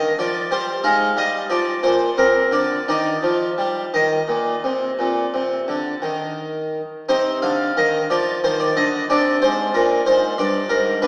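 Set in 12/8 and played with a free, breathing rubato, this brief excerpt from a longer baroque-style suite movement moves with a flowing yet grave character. A Flemish-style harpsichord plays alone throughout, its plucked tone full and brilliant, the three sets of strings giving each chord a rich, ringing body. The instrument sits up front, spanning from a low G2 up to F5. The harmony opens on a sombre minor chord and settles toward a brighter resolution before the darker mood returns at 7.1 s, closing on a suspended, unresolved sonority near 9.1 s. A wet concert hall reverb with a long 2.2-second tail surrounds the playing, though the overall sound has the character of a small speaker.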